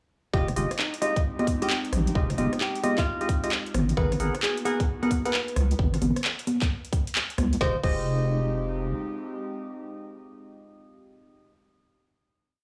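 A late-night, moody two-step garage piece at 132 BPM opens straight into its drop, with a fingerpicked flamenco guitar riff trailing dub echo, hollow organ stabs moving one chord shape in parallel through a lush chorus, a deep wobbling bass line skipping beneath, and a tight two-step kick up front, joined by a breathy pad that pumps softly in the background. An overdriven garage kit adds a woody snare, metallic swung hats and rims, handclaps, a high conga and crash, all shuffling over Fm9 and Abm9 chords in a dry studio sound. The final Fm9 chord arrives at 7.6 seconds; the drums drop out at 8.0 seconds and the bass soon after, leaving guitar, organ and pad to carry it to the end.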